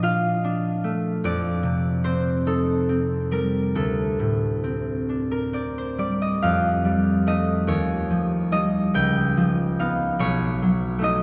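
A cathedral-like reverb with a long 4.7-second tail surrounds this short classical passage for solo concert harp, cut from a longer piece and recorded in a church or concert hall. The acoustic harp sits up front, its fingerpicked notes ringing out across a span from B1 to G5 in 6/8 with a free, rubato feel. The mood is mysterious and gentle, as rich chords drift from Bbmaj7 through F9 and D7sus4 before sliding through Eb9, C#9 and B9 in the closing seconds.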